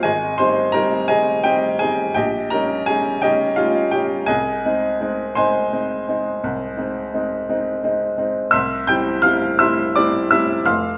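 A clear, woody upright piano opens this dreamy, tender romantic nocturne, playing alone and up front across a span from F1 to G6 over an 11-second fragment of a longer piece. The music moves in a slow, rubato 12/8 at 56 BPM (dotted quarters), passing through Abmaj7, Eb7/Bb and Ab/C before settling on C at 8.5 seconds. A wet recital-hall reverb surrounds the polished tone with a lingering glow.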